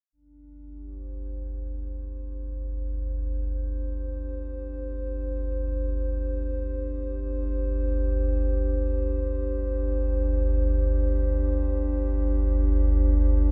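Dark ambient drone in free time, vast and ominous, this excerpt sets a nasal, detuned analog pad holding sustained chords with chorus and a slow fade-in from 0.1 seconds against a deep, rumbling drone entering at 0.7 seconds, its sawtooth-edged tone carrying built-in reverb, phaser and a filter sweep up front in a light digital ambience.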